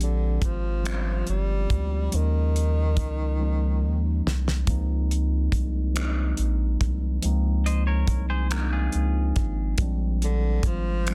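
Slow six-eight R&B at 47 BPM in Db major, sensual and warm, with a round, deep analog bass up front, damped 70s drums with finger snaps, a fat snare with soft clipping, and a drum fill at 3.4 seconds, a mellow tine electric piano through a phaser carrying chords from Bb13 to Dbmaj13, a breathy tenor saxophone with vibrato and scooped notes singing the low melody until 4.3 seconds and returning at 10.2 seconds, and a bright semi-hollow electric guitar adding a brief second line from 7.7 seconds, all dry and densely mastered.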